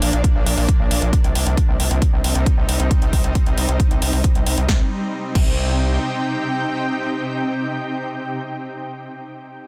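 A straight 4/4 pulse at 135 BPM drives this euphoric yet bittersweet uplifting trance fragment in C minor, where a punchy, tape-warm electronic kick joins at 0.2 s under a layered big-room kit of snare, metallic hi-hats and crash, a gritty, nasal, distorted sawtooth bass with sidechain pumping sits up front over a Bb to C minor change, and a shimmering, ethereal, detuned pad with chorus, 12-bit sampler grit and pumping sustains its chords alone after the drums stop at 5.5 s and the bass at 6.0 s, in a dry, dense, heavily limited mix.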